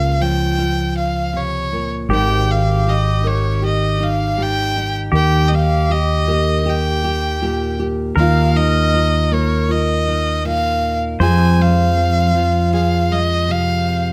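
Acoustic folk-pop ballad at 79 BPM in a straight 4/4, tuned slightly below standard pitch, with an intimate, tender mood that shifts to a new section at 8.2 s. An up-front, nasal violin with light vibrato and an airy bow carries the melody through a slapback echo, over fingerpicked, full-bodied nylon-string guitar and a round, punchy fretless electric bass that sits prominently in the mix. From 2.1 s a quiet, twangy pedal steel guitar adds a second line with compressed volume swells, all captured with close, detailed microphones and little reverb.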